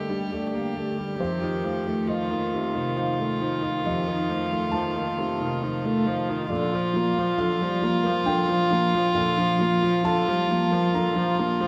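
Reflective and longing, this brief neoclassical passage for piano and strings moves in a slow 3/4 at 68 BPM with a freely rubato feel, and it is cut from a longer piece. A single violin carries the melody in a narrow span from F4 to G4, sitting up front with a soft attack, sul tasto bowing and a pure, floating tone. Beneath it a close, intimate cello adds a second line with light vibrato, while a solo viola, likewise played sul tasto, fills in the accompaniment. A felt-muted upright piano joins the accompaniment with a mellow, boxy sound, its thin felt and audible action noise lending a homely closeness. All four parts play throughout the 11.7 seconds, moving from Gmadd9 to F7 at 1.2 s and arriving at Bb at 6.5 s, all held in a moderate scoring-stage reverb.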